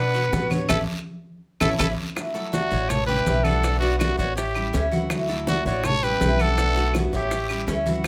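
A growling trumpet leads this sunny, danceable stretch of Cuban son and guajira, its gritty, raspy tone carrying the melody up front with vibrato and a punchy attack. Behind it, a breathy jazz flute adds a second line with a crisp, chiffy attack, while a metallic Cuban tres picks arpeggios on its doubled strings, touched by a slapback echo. A dark, thumpy pizzicato upright bass sits forward in the mix, joined by a picked steel-string acoustic guitar playing accompaniment. Congas with a thin skin, round low-tuned bongos, grainy maracas, a saturated guiro and woody claves fill out the percussion, most of them tucked into the background. A drum fill and band accent arrive between 0.7 and 2.2 seconds, leading into a passage that cycles through major-add-nine, dominant seventh and minor seventh chords, all caught by close, detailed microphones with light reverb in what is cut from a longer piece.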